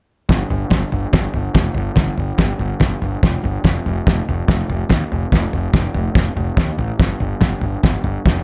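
A light reverb surrounds this short, raw garage rock fragment, cut from a longer piece, with both parts placed up front. At a straight 143 BPM in 4/4, the mood is swaggering and rough-edged. A cloth-damped, thuddy acoustic drum kit of kick, snare and toms sounds as if it sits in a small room, with a fat snare, a tight kick and a rolled-off top end. Alongside it, a picked electric bass is heard direct and amped, pushed through overdrive and tube saturation into a punchy fuzz that stays low, between F1 and Eb2. Both instruments play together from 0.3 to 8.4 seconds, and the drums sit slightly louder than the bass in the mix.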